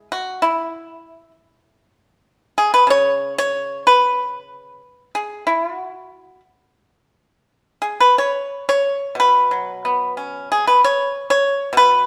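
A bright, percussive pipa, played with fingerpicks, sits up front and dry as the only voice in this elegant, pastoral piece of Chinese traditional solo plucked-string music. It moves in a free, rubato feel across a range from B2 to C#5, captured live in a stone room whose reverb lends a sense of space. This 12.1-second passage is cut from a longer performance.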